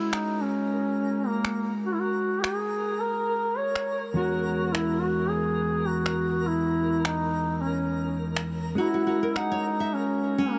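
Peaceful and warm, this short cut from a longer organic downtempo piece moves at an unhurried pace with a light swing. A distant, roomy duduk carries the folk-style melody up front, its vibrato and scooped notes softened by delay. Beneath it, a dark, compressed clean electric guitar plays fingered accompaniment through spring reverb, while electronic finger snaps with a tape-tinged, produced feel keep time until 9.5 seconds. From 0.3 seconds a faint, twinkling granular texture adds a bright FM sparkle with an octave-up shimmer and slow, sustained swells of its own built-in reverb. At 8.8 seconds a deep classical nylon-string guitar enters with fingerpicked arpeggios, finger squeak and delay, as the harmony moves from F#add9 through Eadd9 to F#9, all of it set in a huge ambient reverb.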